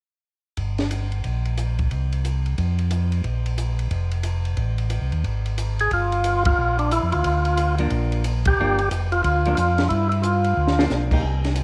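A smoky, soulful soul jazz organ trio cut from a longer piece, heard in light reverb and studio ambience at a swinging 180 BPM in G dorian. From 0.6 seconds a mellow, round tonewheel organ carries the bass line, lightly overdriven with chorus vibrato and a slow rotary speaker, sitting up front, while a compact cocktail drum kit with a high-tuned snare, punchy kick and rolled-off top plays crash, hi-hat, ride and snare in a small room. The opening moves from Gm through a Bb5 and an Adim, with chordless breaks between. At 5.8 seconds a second, percussive tonewheel organ takes the melody, clean and full with key click and second harmonic percussion through its own slow rotary speaker, as the harmony settles on Gm7. The band hits accents at 6.4 and 8.4 seconds, a compressed, picked hollow-body electric guitar joins in accompaniment at 7.8 seconds, and a short drum fill closes the passage just before 11 seconds.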